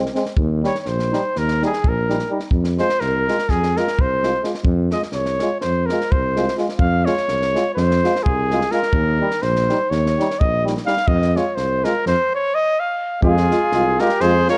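Restless and fiery, this Balkan brass band fragment in 9/8 puts a mellow cornet with light vibrato up front on the melody, over a breathy tuba bass, two clear euphoniums in the background, one of them distant, and a dry, compact cocktail drum kit with a punchy kick and high-tuned snare, while a soft-attack flugelhorn joins with a smooth second line at 13.2 s, in a dark mix with light reverb.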